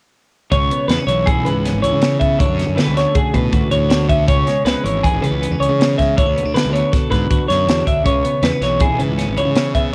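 A pair of bright, twangy twelve-string electric guitars leads this intricate, wistful math rock and midwest emo excerpt in 5/4, one playing chiming high arpeggios over the other's clean picked chords, which sit up front and move from C#m7 through Dmaj7 and Bm/D, while a dark, round fuzz bass with overdrive and a crisp, airy fusion kit with a high-tuned snare and punchy kick fill out a small-room home cassette recording.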